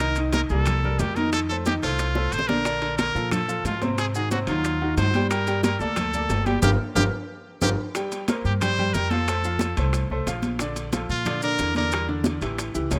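A rough home demo mix with light reverb and a small room ambience frames this passionate, driving salsa excerpt at 181 BPM, its bright, up-front solo trumpet carrying the melody until 12.1 seconds over a brilliant, worn concert grand piano with deep bass and a woody, thumpy pizzicato upright bass. Underneath, ringing high-tuned congas played with soft hands sit close and dry beside very quiet, round low-tuned bongos, while grainy maracas and distant metal-shell timbales in a large room join at 0.2 seconds. Drum fills punctuate the groove, and a band accent from 6.6 to 8.0 seconds pushes the harmony from a Cm7 progression into a new section starting on C5 at 8.0 seconds.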